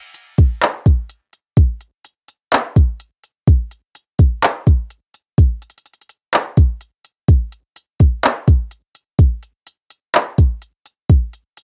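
Hip hop drums at 126 BPM in a half-time 4/4 feel carry a dreamy, floating mood through this short cut, where a smooth R&B electronic drum kit of soft kick, smooth hi-hat and handclaps sits up front with tape-warm cassette colour and light reverb from 0.1 to 11.6 seconds.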